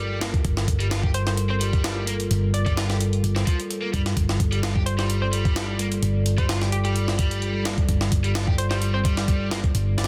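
A dense, heavily limited mix with light reverb carries this swaggering, funky breakbeat excerpt at 129 BPM in G minor, where a gritty, pitched-up sampler-style drum kit with a thumpy kick and high-tuned snare sits up front over a background analog electronic hi-hat, a round hollow-body picked bass with tube saturation, a double-tracked overdriven guitar riff with tape echo, and a moody, detuned pad holding a Gm9 chord with chorus and sidechain pumping, while a bouncy, ring-modulated square pluck melody with 12-bit sampler grit and an AM radio tone enters at 1.1 seconds.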